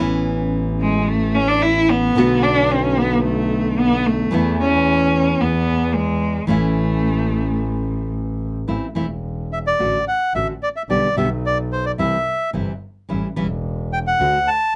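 Melancholic and tense, this rubato tango excerpt at 109 BPM in 4/4 sets a full-bodied fingerpicked nylon-string guitar and an earthy, bowed double bass with light vibrato under an expressive cello solo rich with vibrato and portamento, before the music turns from A major to A minor at 8.7 s and a reedy, dark bandoneon takes the melody from 9.5 s, all in light reverb.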